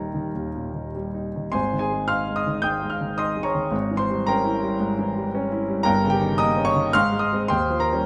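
Lightly reverberant and intimate, this brief 8-second fragment of a hopeful, lyrical romantic character piece features a solo concert grand piano, up front with deep bass, long sustain and audible action noise, played with rubato in 4/4 at about 95-117 BPM in Ab major, moving from Eb through Ab and a Gdim7 over Ab to Eb7, back to Ab and a closing Eb13.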